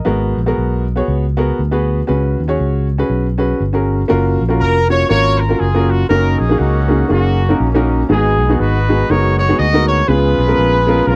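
A dry, close 1970s-style studio sound frames this reverent, hopeful uptempo gospel excerpt in F# major at 120 BPM with a swung feel, where a woody upright piano with audible action noise and a round, dark fingered electric bass carry the G#m9 to C#7sus4 opening before a punchy, clear horn section with light vibrato takes the melody at 4.6 seconds over chords moving from F#maj7 toward C#7.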